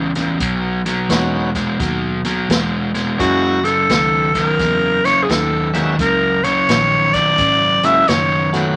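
A raspy, growling tenor saxophone takes the solo melody up front from 3.2 seconds, its gritty tone colored by scooped notes and light vibrato as the harmony moves from B to F#7. Beneath it, this soulful, laid-back electric blues shuffle rolls at 86 BPM in a swung 4/4, built on a picked, overdriven hollow-body guitar riff, a dark, round, foam-muted fingered bass, and a vintage kit with a punchy kick, medium-tuned snare, hi-hat and a rolled-off top. A full, lightly overdriven tonewheel organ joins at 1.1 seconds through a slow rotary speaker, and light reverb gives this short excerpt from a longer piece a natural studio-room feel.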